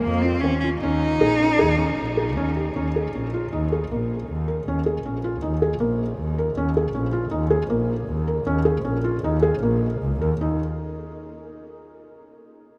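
A vast, echoing space with a long, heavily wet reverb surrounds this shimmering, playful excerpt of contemporary chamber music in 5/4 at 157 BPM, opening on a Bbmadd9 chord. A bowed cello sings the melody with expressive vibrato and portamento until 2.3 s, while a felt-muted upright piano plays dark, intimate arpeggios with audible action noise. A nasal, boxy bowed double bass carries the bass line, and both piano and bass continue until 10.6 s.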